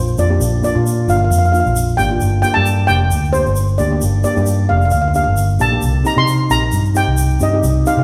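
A lightly swung 4/4 groove at 133 BPM carries this festive, bouncy calypso, where a shimmering, close-miked lead steel pan played with soft rubber sticks rings up front between C5 and C6 over a boxy double-seconds pan accompaniment, a dark, round, punchy foam-muted vintage fingered electric bass and a grainy tube shaker, heard in a wet recital-hall reverb as the chords move from Bb6 to Gm at 2.2 s and Cm7 at 5.8 s.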